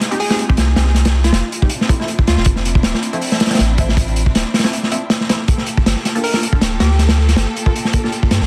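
A dense, heavily limited mix with vinyl crackle and small-room ambience frames this frenetic, atmospheric drum and bass and jungle excerpt, cut from a longer piece and built on a lightly swung, crunchy breakbeat kit whose saturated, gritty hits sit up front beside a round, deep dub sub bass. In the background, a lush, bowed string section holds sustained chords, while a muted, detuned dub chord stab with phaser and echo moves through Fm9, Dm9 and Gm9. A hollow, bouncy square pluck with chorus and dub echo carries the melody in brief phrases, returning at 6.2 seconds after a short break from 4.7 to 5.5 seconds.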